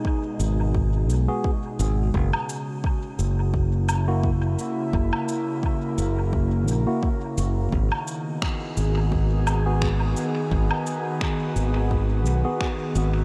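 An airy, breathy pad with chorus holds soft, slow-blooming chords over an overdriven, layered electronic kick from the very start of this meditative, deep ambient dub excerpt, with a bright fingered electric bass joining up front at 0.4 s. Electronic cabasa, woodblock and finger snaps carry dub echo and the sound of a large room over a lightly swung groove, while a clean tine electric piano places echoing stabs in the background from 1.3 s. The harmony moves from G#m7 to F#7 and returns at 7.7 s inside a huge, dreamy reverb that soaks the mix.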